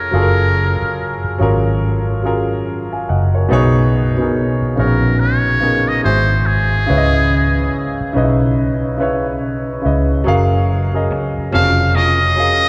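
A buzzy, breathy trumpet with a metal mute carries the melody over a worn, long-sustaining baby grand piano and a round, punchy fingered electric bass in this soulful neo-soul excerpt at 71 BPM in F# major, with a slightly broken-up electric guitar with spring reverb slipping in faintly at 11.1 seconds, all set in the long cathedral reverb of a church or concert hall.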